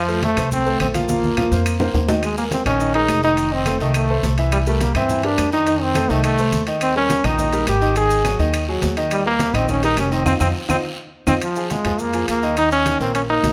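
A bright, punchy trombone leads this driving, passionate salsa excerpt, standing up front as the solo voice with a light vibrato and a smooth top. Set at 209 BPM in Bb minor, the tune moves through chords such as Eb9sus4, F7, C7 and Eb7 before settling on open fifths. A brilliant concert grand piano with deep bass and short sustain provides the accompaniment, while a dark, thumpy upright bass played pizzicato on gut strings anchors the low end. Behind them sit low-tuned ringing congas struck with soft hands, metal-shell timbales, grainy, mellow maracas, a raspy, saturated guiro, and woody claves that sound distant in a large room, entering at 0.4 s. A drum fill arrives at 1.1 s, and the full band hits an accent starting at 10.3 s, all carried in a light reverb.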